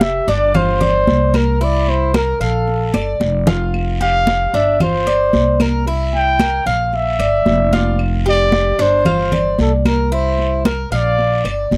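A sunny, relaxed stretch of Cuban son and guajira in a straight four, cut from a longer piece, led by a breathy, whispered trumpet that sings up front with vibrato, soft attacks and scooped notes over a cycling Fsus2, Gm7, C7, Bb progression. A picked Cuban tres spins metallic, double-strung arpeggios beneath it, while a dark, thumpy gut-string upright bass sits up front and high-tuned congas ring out under hard hands, with a drum fill at 2.9 seconds. Raspy guiro and woody claves stay in the background, the claves entering at 0.5 seconds, all captured in a dry, close 1970s-style studio sound.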